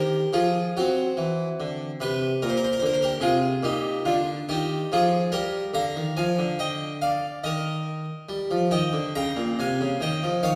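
This classical, baroque-style suite movement for solo harpsichord is a short, serene, flowing passage cut from a longer piece, moving at 71 BPM in 4/4 with a rubato feel. The harpsichord is the only part, sounding from 0.0 to 10.6 s across a range from Bb2 to Bb5. It has a plucked, full Flemish-style tone with two sets of strings, and it is close-miked, dry and up front. Around it, a wet recital-hall reverb with a 1.7 s decay gives the impression of hearing it from further back in the room. The harmony opens on Gm and passes through Cmaj9#11 and Gm/Bb before settling into Eb major at 5.8 s, where Ebmaj9/D gives way to Eb and finally Eb7 at 9.2 s.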